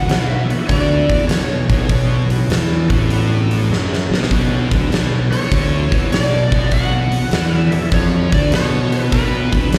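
Heard as a live gig through the venue's PA with a touch of recital-hall ambience, this smoky, heavy blues rock and southern rock clip swings at 100 BPM in B minor: a thick, double-tracked fuzz guitar riff and an up-front, overdriven fingered bass drive beneath a warm slide guitar melody coloured by slapback echo and analog delay, a very quiet, gritty tonewheel organ holds sustained chords through a slow rotary speaker, and a huge arena drum kit with a fat snare and punchy kick joins at 0.1 seconds and plays a fill at 3.7 seconds.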